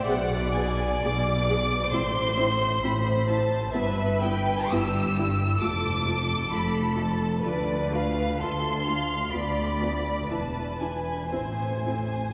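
Rubato with uneven beats at 64 BPM in 4/4 shapes this melancholic, elegiac slow romantic movement for string orchestra in A minor, cut from a longer piece, where an up-front, lush violin section carries the melody over a clear second violin line, dark, expressive viola accompaniment with portamento that stops at 11.9 s, a rich, distant cello section and a focused double bass section, all bowed with vibrato and bathed in a wet concert-hall reverb.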